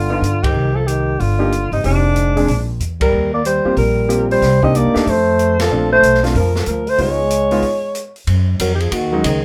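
Swung eighths at a brisk 186 BPM in 4/4 drive this playful, relaxed small-group swing and bop cut from a longer piece, where a breathy, subtoned alto saxophone with vibrato carries the melody up front over a mellow, close-miked trombone second line, a woody, growly pizzicato upright bass, an intimate grand piano with audible action noise comping in the middle register, and an open drum kit with dark cymbals and a boomy kick, all in light reverb, with band accents at 0.4 and 3.0 seconds and a break at 7.6 seconds before a new section begins over an F#sus2 chord.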